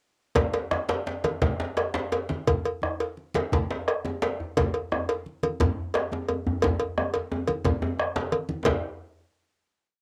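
Festive and driving, this complete West African drum-ensemble piece in 12/8 gathers pace throughout, with a metallic, close and dry cowbell up front carrying the bell pattern, a round, vintage bombo holding an evenly spread pattern, a medium-tuned background djembe struck with hard hands, thick-skinned, damped and saturated congas behind, and a deep lead djembe up front playing lead drum phrases, building through a drum fill from 6.6 seconds to a final hit at 8.7 seconds, all captured as a home cassette recording in a moderate booth ambience.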